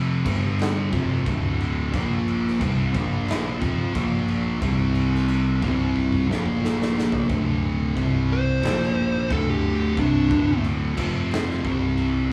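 Captured as a band playing live in one small room with light reverb, this hypnotic, brooding stoner and doom metal cut pairs an up-front thick fuzz guitar riff with a second, darker fuzz guitar sitting in the background, over a growling overdriven picked bass and an oversized, low-tuned acoustic drum kit with a boomy kick, dark cymbals and a gritty, saturated sound, which rolls into a fill at 6.0 seconds before a dark fuzz lead guitar melody cuts through from 8.3 to 10.6 seconds.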